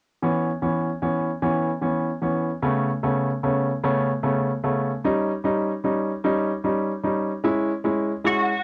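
This pop fragment, cut from a longer piece, moves in a slow 6/8 at 50 BPM counted in dotted quarters, with a dramatic, aching mood in C# minor and tuning set slightly low at A4 = 438 Hz. A clear baby grand piano carries the accompaniment from 0.2 seconds, sitting up front with a natural, short-sustained tone between C#3 and E4, colored by cassette tape. Its harmony passes from C#m7 to Aadd9/C#, then to a tense D#7 before settling on C#m/G#. Near the close, at 8.3 seconds, a twelve-string electric guitar steps forward with a single melodic F#4, bright, clean, compressed and twangy, thickened by ensemble chorus and the same cassette coloring, overlapping the piano briefly before it stops at 8.5 seconds. Light reverb and the intimate grain of a home cassette recording give the whole fragment a hushed, personal character.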